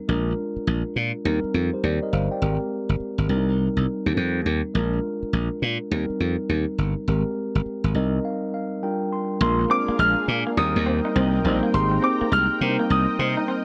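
A mellow, clean tine electric piano opens this punchy, confident R&B passage, joined almost at once by a bright, growly slap bass sitting up front, at 103 BPM in 4/4 with a swung sixteenth-note feel. Together they cycle through Bb7, Eb6, Abmaj9 and Cm7, and from 7.7 seconds the electric piano plays a fill into a short break that touches Gm7 before the progression comes back around. At 9.4 seconds a second section begins, bringing a polished, present grand piano melody high in its register, treated with delay. Beneath it a lush, thick pad of detuned sawtooth unison voices holds sustained chords, its vintage, warbling tone shaped by chorus, a slow attack and a long release. Shortly after, a twangy, slightly broken-up guitar through a small old amp adds a fingered riff in the background, bathed in lush chorus. The production is dark with light reverb, and the passage is cut from a longer piece.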